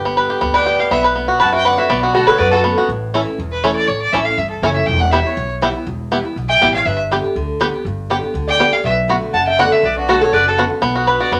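Twangy, percussive banjo arpeggios sit up front in this lonesome, driving bluegrass excerpt in B minor at 242 BPM, joined at 0.5 s by a clear, earthy bowed fiddle carrying the melody with light vibrato and by a nasal, metallic slide resonator guitar playing a second line in two stretches, the later one from 6.5 s, all over full-bodied picked dreadnought guitar accompaniment and a woody, thumpy pizzicato upright bass in a moderate club reverb.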